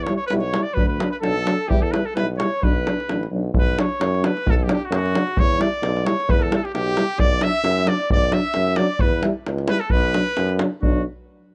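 Up front, a clear trumpet carries the melody of this fiery, bittersweet Balkan brass band fragment in 2/4 with a lightly swung feel, while a scooped, vibrato-laden flugelhorn sits in the background on a second line, dropping out between 3.3 and 6.3 seconds. A vintage-sounding tuba anchors the bass, and a dark, smooth-topped trombone and a warm, distant euphonium fill in the accompaniment over a deep, compressed and saturated davul. The dry, close 1970s-style studio sound moves from an opening section into a second at 3.5 seconds, with the harmony circling between E minor, D and B minor.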